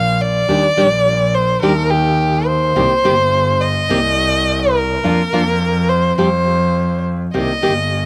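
A warm, bowed violin carries a passionate solo across the whole 8.1-second excerpt, its soft attack, vibrato and portamento lending a dramatic, expressive edge to this rubato tango at 105 BPM. A clear, biting bowed double bass underpins it with its own vibrato, while a full-bodied, fingerpicked nylon-string guitar enters at 0.5 seconds with deep classical accompaniment over chords moving from Ebmaj7 through Cm7, Bb/F and Fsus2. Slapback echo touches the violin and guitar, and the outdoor recording sounds dry, with little reverb.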